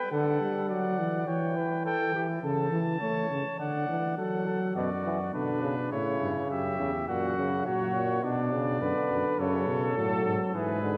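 A classical imitative canzona for brass ensemble, solemn and contemplative at 104 BPM in a straight 4/4, cut from a longer piece and settling into B minor at 4.8 s. A soft-attacked trumpet carries the melody while a mellow flugelhorn with light vibrato and a smooth top weaves a second line, and a dark, up-front bass trombone with gentle vibrato anchors the bass from 0.1 s; a present trombone with a warm tone joins as accompaniment at 4.8 s. The ensemble sits in a wet, resonant church reverb with a long decay, and lossy compression artefacts colour the sound.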